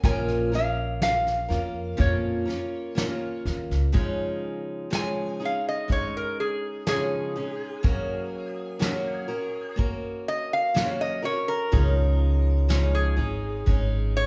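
Heard from further back in a large, wet studio room, this peaceful acoustic folk piece in Db major at 62 BPM sets a metallic, nasal lap resonator guitar, played with fingerpicks and slide and bathed in plate reverb, over a picked steel-string acoustic guitar, a woody, thumpy pizzicato upright bass that drops out between 3.9 and 11.7 seconds, and a distant, roomy brush kit with a fat snare and tight kick. After an opening on Bbm, the resonator takes a steel-bar solo from 3.9 seconds across chords of Dbadd9 and Gb.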